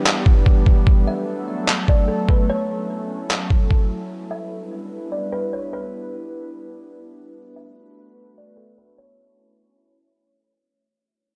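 A very quiet electronic downlifter opens this hazy, ethereal cloud-rap hip hop fragment alongside a woody, airy kalimba melody touched with delay and a warbling, detuned lo-fi pad holding Em7, Bm7 and F#m7 chords through chorus, phaser and reverb, while a gritty, pitched-down sampler-style drum kit of thumpy kick and handclaps sits up front in half-time from 0.1 to 3.8 seconds before the kalimba and pad carry on through a filter sweep and fade-out, the kalimba until 10.2 seconds and the pad to 10.6 seconds.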